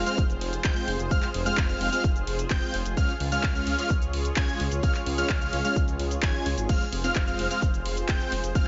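A digital ambience with a dulled top end surrounds this emotional, anthemic excerpt of festival progressive house, where sidechain pumping breathes through the pad, lead, supersaw chords and bass as the harmony moves from Fm to Db and returns to Fm at 6.7 seconds. A layered house kit of cabasa, crash, handclaps, hi-hat and ride opens in studio reverb, joined a moment later by a punchy electronic kick that sits up front in the same reverb, above a thick detuned saw bass driven by tube saturation and chorus. Huge supersaw chords play a riff with dub echo, a bold, high unison lead runs arpeggios with vibrato and its own dub echo, and a bright, slow-blooming unison pad holds sustained chords through chorus and phaser.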